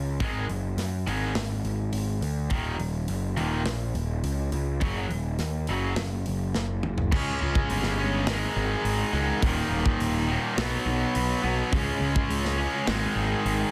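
A bright, double-tracked distorted guitar riff drives this aggressive, heavy hard rock excerpt, backed by a growly, fuzzy picked electric bass up front and a tight metal drum kit with a tight, softly clipped kick and clipped snare, whose fill at 6.6 s launches a second section at 7.1 s, all in a dry, dense, heavily limited modern mix.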